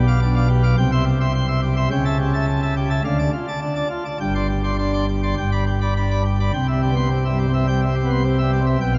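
Classical organ toccata in C major at 106 BPM in a straight 4/4, majestic and brilliant, cut from a longer piece: a solo pipe organ on full plenum with mixtures and a baroque voicing sits up front, its chiff audible as it spans G1 to D6 through a progression from G7/B and C via A7/C# and Dm to Gsus4 and G, reaching a new section on C at 6.5 seconds, all bathed in a 5.0-second cathedral reverb within a dark production dusted with vinyl crackle.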